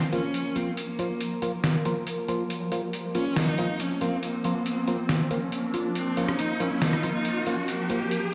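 A cavernous, heavy sound fills a bare stone room, with spring reverb and vinyl crackle coloring this short build-up of deep, half-time dubstep in Bb minor at 139 BPM. A close, focused solo cello carries the bowed melody with vibrato and dub echo, while a blurred, evolving granular pad holds sustained chords and a hollow, wave-folded organ stab adds percussive, mellow hits through chorus, phaser and dub echo. Up front, a gritty, pitched-down sampler-style kit of hi-hat, rim click and snare gives a tape-warm pulse, and from 1.6 s an electronic riser enters in the background.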